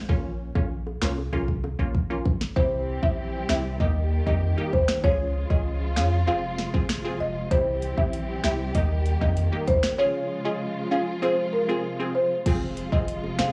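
A straight 4/4 dancehall groove at 97 BPM in F minor sets a hypnotic, sultry mood in this excerpt from a longer piece. An electronic afro-pop drum kit sits up front, with a deep kick, sharp snare, metallic hi-hats, finger snaps and crash cymbal, and it plays a fill from 1.3 seconds. Alongside it comes a punchy sine sub bass with a pitch-drop attack, while tight, high-tuned bongos patter softly in the background before returning near the close at 12.5 seconds. A crisp, detuned wavetable chord stab with a filter pluck and phaser pumps with the beat, moving through chords such as Bbm, C, Eb, Db and Fm. At 2.6 seconds, a woody, buzzing marimba takes the melody through an analog delay, over a lush, bowed studio string section with expressive vibrato that also pumps with the beat. The whole recording has a dry, gritty hardware character with transformer saturation and small room ambience.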